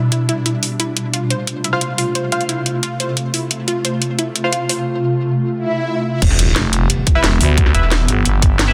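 A swarming, wave-folded drone holds sustained chords from the first moment, tense and granular with its own reverb and a sidechain pump, setting an aggressive, mechanical tone for this dark technical drum and bass at 177 BPM in E phrygian, moving from Em to F and back. A lush, punchy unison pluck traces sidechained arpeggios with delay early on, while a band-passed, nasal chord stab cuts in with chorus, phaser and delay and a filter sweep across the opening section. An up-front electronic drum kit with a cracking snare, metallic hats and crash cymbal drives the groove throughout, and a background swell builds into an impact as the drop lands at 6.2 seconds. There a tight electronic kick arrives alongside a swirling, thick detuned saw bass with phaser and tube saturation, joined at 6.6 seconds by a growling FM bass, also saturated and up front. The mix is dense and heavily limited, with light reverb and a small-room character on the drums.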